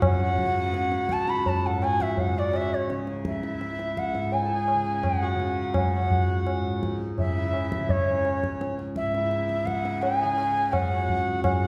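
A straight 4/4 pulse at 84 BPM runs through this solemn, meditative Hindustani classical excerpt, tuned to A4 = 435 Hz and cut from a longer piece. The low-tuned tabla sits close and dry, its strokes carrying a short ring as they keep time throughout the 11.7 seconds. Above it, a bright bamboo bansuri carries the melody between C#5 and B5 with a straight, reedy, tongued tone that stays up front. A hand-pumped harmonium adds a second line lower down, breathing and mellow, while a softly plucked tanpura holds a buzzing, shimmering drone from C#2 to C#3 beneath everything. The whole ensemble sounds as if heard from further back in a recital hall, whose wet 1.6-second reverb lends the meditation a spacious air.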